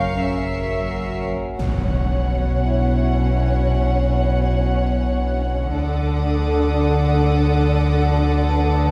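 In a straight, slow 3/4 at 87 BPM, this eerie, tense cinematic suspense cue in B minor, cut from a longer piece, sets sul tasto violins on a pure, floating melody over a close second violin line. Beneath them sit an intimate cello section with light vibrato, a background double bass section and a deep, thick saturated sub bass drone. A mellow, ringing soft-mallet vibraphone enters at 0.9 seconds, and a background electronic impact hits at 1.6 seconds as the harmony moves from F#7 to Bsus2 and on to D. A faint, high violin texture drops out early and returns at 5.7 seconds, and the whole is heard from further back in a wet scoring stage.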